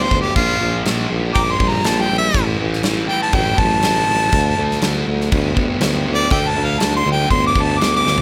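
Brooding and heavy, this short cut of blues rock and southern rock in D minor at 121 BPM puts a clear, close-miked harmonica up front with an overdriven solo carrying tongue slaps, scooped notes and slapback echo over a sludgy, double-tracked distorted guitar riff, a mellow tuba bass with vibrato, and a big rock drum kit with bright cymbals and a tight kick that enters at 0.1 seconds and closes with a fill at 8.1 seconds, all in light reverb.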